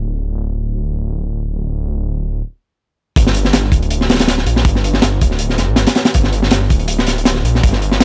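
Dark and atmospheric, this short cut from a longer drum and bass piece leans into jungle territory at 161 BPM in G minor, with a slight swing on the sixteenths. A thick, menacing detuned saw bass opens alone, its beating tone blending sawtooth, square and sine qualities with a fast attack and sustained, saturated body that sits up front in the low register. Around 2.4 seconds the music briefly stops, then the drop lands at 3.2 seconds as a crunchy breakbeat kit joins the bass. The kit has an acoustic, small-room character, with a punchy kick, a high-tuned snare and hi-hat, all gritty and saturated with a rolled-off top that keeps it dark. The mix is close and dry, with little reverb, so both parts feel immediate through to the end at 8.0 seconds.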